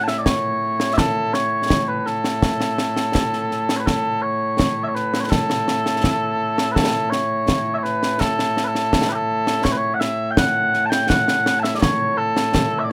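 A mellow, sweet set of small bagpipes carries the melody up front in a continuous solo line with vibrato, ranging from A2 to A5 in A major, in this stirring, ceremonial Scottish pipe tune at 83 BPM in a straight 2/4. Concert snare drum and concert bass drum, acoustic with bright cymbals and a small-room sound, sit up front beside the pipes from 0.1 to 12.7 seconds. The strain is played through twice, the second time starting at 3.9 seconds, in a rough home demo mix with light reverb, cut from a longer piece.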